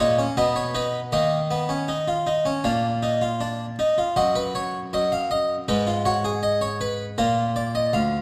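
A solo Italian-style harpsichord, close-miked and up front with a full, brilliant, plucked tone and octave strings, opens this serious, driving excerpt from a baroque-style three-part fugue in straight 4/4. It is tuned slightly below standard pitch and set in a wet recital-hall reverb within a dark, warm production, with a new section beginning at 4.2 seconds before the fragment breaks off at 8.2 seconds.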